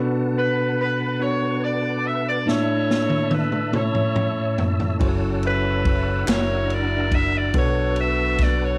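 Captured as a home cassette recording with light reverb, this slow gospel passage in 6/8, cut from a longer piece, feels reverent and hopeful. A bell-like tine electric piano and a clean tonewheel organ, turning through a slow rotary speaker with chorus vibrato and key click, sit beneath a bright, tight saxophone section that carries the melody with light vibrato. A swinging big-band drum kit with a punchy kick enters with a fill at 2.5 seconds, a dark, round fingered electric bass sits up front from 5.0 seconds, and a distant group handclap sounds briefly at 6.3 seconds over chords such as Bm7 and F#7b13.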